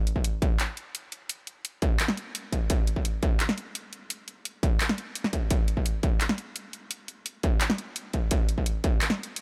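A drum and bass drum kit opens this dark, spacious excerpt at 0.1 s, its cracking snare, handclaps and bright hi-hats sitting up front with an overdriven, layered edge. An electronic kick drum joins at 0.2 s, distorted and produced, with the grit of being re-recorded in a small room. The groove runs at 171 BPM in 4/4 but moves with a half-time feel, giving the drums room to breathe. Both parts carry a small room ambience, while a digital ambience surrounds the whole mix and adds to its sense of depth. The kick drops out at 8.9 s, leaving the kit to carry the final moments until 9.4 s, where the cut from the longer piece ends.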